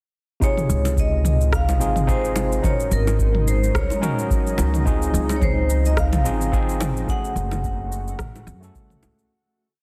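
A woody, thumpy upright bass sits up front, its dark, gut-string pizzicato tracing a dub-style line from Gb1 to Gb2 through this short, relaxed sunset chillout piece in Db major at 108 BPM, with a 16th-note swing. A ringing, metallic vibraphone with medium mallets and a medium motor vibrato carries a motif-based melody of call phrases through digital delay, while a barky, gritty tine electric piano, overdriven through a combo amp, holds rootless chords with syncopated pushes, also under digital delay. From 1.1 seconds, a shimmering, ethereal pad with an octave-up shimmer and granular texture adds sustained chords through chorus and its built-in reverb. An overdriven deep kick, re-recorded in a large room, anchors a light lounge beat of cabasa, rim clicks and low toms, with round, low-tuned bongos playing on the high drum. The harmony moves from Dbmaj9 to Ab7sus4, back to Dbmaj9 and on to Gbmadd9 in a dense, heavily limited modern master, and a fade-out begins at 6.3 seconds.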